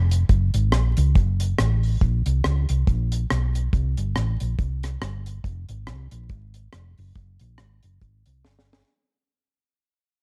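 A hollow-body, short-scale electric bass anchors this mischievous, driving ska clip, fingered and amped with a round, dark tone that sits up front and moves between F1 and Db2 from the very start. A deep reggae drum kit enters at 0.1 seconds, acoustic and dry, with a tight kick, a high-tuned snare, rim clicks and hi-hat, also placed close to the listener. The groove runs at 140 BPM in 4/4 with a light swing on the eighth notes, in B-flat minor. A drum fill arrives at 8.4 seconds as the clip, cut from a longer piece, fades out across its whole length. The production is warm and almost free of reverb, with a layer of vinyl crackle giving it a worn, intimate character.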